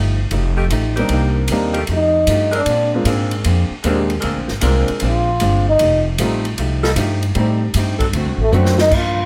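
A cup-muted trombone carries a veiled, breathy melody with scooped notes from 1.9 seconds, returning at 8.4 seconds in this short, joyful big band swing excerpt at 153 BPM in F mixolydian. A woody pizzicato upright bass sits up front, and the polished drum kit with dark cymbals and a punchy kick plays a brief fill near the end. A close-miked saxophone section holds sustained chords, while an intimate concert grand piano with audible action noise and a clean, dark, hollow-body archtop guitar fill out the accompaniment in a lightly reverberant, detailed mix.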